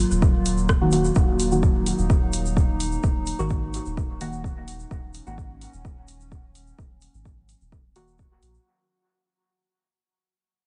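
A dry, dark-toned mix fades out across its full 8.7 seconds in this meditative, deep dub techno fragment at 128 BPM in Eb minor, resting on a single Ebm chord. A warbly, lo-fi tape-like pad with chorus and its own reverb sustains nostalgic chords over a soft, round sub bass, both pumping against an up-front electronic kick with a tape-warm, small-room character. A mellow chord stab with chorus, phaser, filter sweep and dub echo sits forward in the mix, while a deep house kit's hi-hat and rim click carry dub echo and a grainy, bright egg shaker adds acoustic texture from 0.1 seconds.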